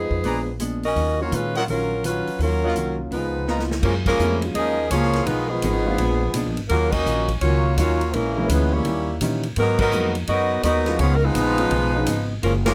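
Brassy and sultry, this big band swing excerpt moves at 168 BPM in Eb minor before shifting to F# major at 3.8 s, with a clear, close-miked saxophone section carrying the melody over a woody, growly upright bass and a swinging drum kit with a punchy kick. A soft-attack trumpet section adds stabs until 3.6 s, while a nasal, straight-muted trombone section enters at 3.1 s as a second line in the background, alongside a dark, clean hollow-body guitar and an intimate grand piano with audible action noise. A drum fill leads into the second section, where band accents land at 4.0, 6.9 and 9.7 s within a close, detailed sound and light reverb.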